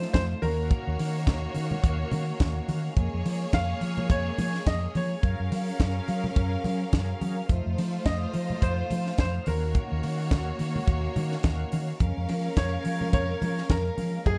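A tight funk drum kit sits up front at 106 BPM in 4/4, its dry, high-tuned snare and tight kick driving a swung sixteenth-note disco groove, while very quiet, low-tuned congas played with soft hands come in at 0.1 s. Underneath, a fingered electric bass gives a round, amped foundation as the harmony moves through Ebm7, Bbm7/F, Gbmaj9 and F7 in Bb minor. A brilliant baby grand piano with short sustain carries the melody, and a lush, bowed studio string section, close and focused with vibrato, plays a second line; both parts carry slapback echo. Further back, an overdriven tonewheel organ holds gritty, thick chords with key click, percussion, chorus vibrato and a slow rotary speaker. The mood is sultry and danceable, set in a small room with a dark production, and the passage is cut from a longer piece.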